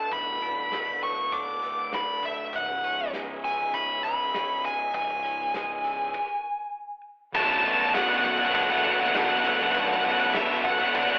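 Heard through a narrow, telephone-like filter, this short post-rock excerpt sounds like a band playing live in one room, bathed in a large studio reverb. The mood is melancholic and cathartic, moving at 100 BPM in a straight 4/4 in B dorian, with chords shifting from Bm7/D to C#m7. Up front, a dark, bluesy lead guitar sings the melody with heavy distortion, while a lush, bowed symphonic string section holds soft-attack chords with vibrato in the background. Beneath them, a bright, twangy twelve-string electric guitar picks clean, compressed arpeggios, and a growly, punchy fuzz bass anchors the low end as a loose acoustic drum kit with dark cymbals and a pumping room sound keeps time behind it all. After a stop at 6.1 s, the music lands on Bm7 at 7.3 s, where a sludgy overdriven guitar and a thick, bright fuzz guitar join in on a riff.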